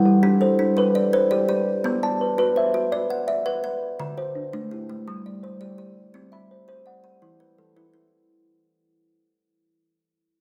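A southern African traditional piece in 12/8 with a hypnotic, warm mood, built on an mbira-style interlocking cycle as two kalimbas weave arpeggios through a short span of chords. One kalimba sounds woody and hollow, with a ringing thumbnail pluck and a vintage, band-limited tone. The other comes across bright, close-miked and full, placed up front and somewhat quieter, while a wet recital-hall reverb surrounds the pair in this fading fragment of a longer piece.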